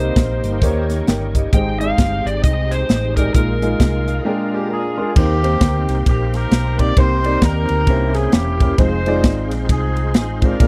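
Jubilant and uplifting, this swung, uptempo gospel passage, cut from a longer piece, sets a bright, overdriven slide guitar on the melody over an intimate grand piano with audible action noise, a gritty organ on a slow rotary speaker in the background, very quiet bowed strings with expressive portamento, a round, punchy hollow-body bass and a crisp, up-front drum kit with dark cymbals, until a piano fill and short break lead a distant, roomy jazz-style horn section in at 4.5 seconds to take over the tune as the guitar drops out at 4.7 seconds, captured in a dry, close 1970s-style studio sound.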